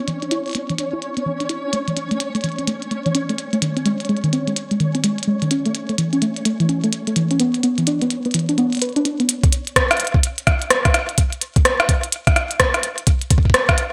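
A glitchy kit of clicky, filtered hats and rim clicks swings its 16ths at 127 BPM through this eerie, cerebral IDM passage cut from a longer piece, with a compressed, gritty, thumpy kick entering up front at 9.4 seconds. Until 9.3 seconds, a soft, round, dark pluck with chorus and delay spins arpeggios under a filter sweep, over chords moving from E5 through A/E, C#sus2 and A, while a faint, flickering granular texture sustains with detuned shimmer. The bright 1980s-style digital production sits in a moderate plate reverb.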